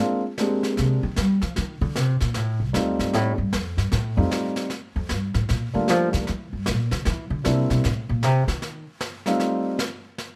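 A playful, swinging jazz piano trio cut from a longer piece. A dark, mellow upright piano carries the melody with long sustain, while a pizzicato upright bass, thumpy and woody, takes a solo and sits up front over snare and brushed snare in a studio room. The chords move through dominant ninths and minor sevenths, and the whole trio is set in a light reverb.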